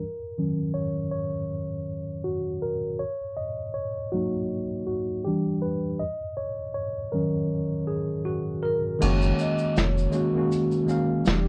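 A cassette-tape haze and a gentle low-pass softening color the whole recording, which sits in a moderate studio reverb. This mellow, nostalgic lo-fi hip hop piece is cut from a longer work and moves at 80 BPM in 4/4, with a light swing on the sixteenths, in F# major. A worn, slightly out-of-tune tine electric piano plays the chords alone at first, up front and direct, through D#m7, F#6 and Em7, while a filter sweep runs across the opening 9 seconds. At 8.3 seconds a vibraphone struck with soft mallets, its motor off, adds a ringing, metallic melody in a dark, smooth tone. At 9.0 seconds a round, deep dub sub bass arrives up front alongside a vintage brush kit, whose small-room sound carries dusky cymbals, hi-hat, shaker and a medium-tuned snare while the kick stays muted, as the harmony settles on F#69.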